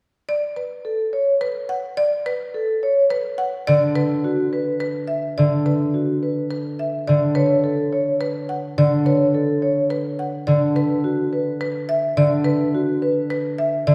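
A marimba struck with medium hard mallets opens at 0.3 seconds, its woody, bright padauk bars carrying a melody up front, and the vibraphone joins moments later at 0.8 seconds with ringing, metallic arpeggios colored by a slow motor vibrato and a vintage, band-limited character. This is a hypnotic, meditative piece of minimalist classical pattern music in B minor, moving at 106 BPM in a straight 3/4. A concert harp enters at 3.7 seconds, its fingerpicked, acoustic tone settling on a low D as accompaniment. The harmony shifts between a B7 sound, chordless stretches and B minor, holding the music in a trancelike loop. A wet scoring-stage reverb places the ensemble further back in the room, and the passage is cut from a longer work.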